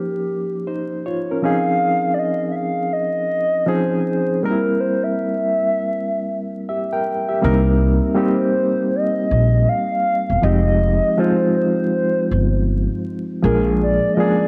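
Hip hop at 80 BPM with a swung, reflective and melancholic feel, where a hollow, mellow clarinet-like synth lead with chorus and vibrato carries the melody over a barky, lightly overdriven electric piano shimmering with fast tremolo, a filter sweep colors the opening 7.4 seconds, a thumpy pizzicato upright bass with gut strings enters at 7.4 seconds as the chords move from Eb9 through Cm7 and Fm9 to Bb7, and the whole excerpt sits in spring reverb with worn, warbling tape, pitch drift and vinyl crackle.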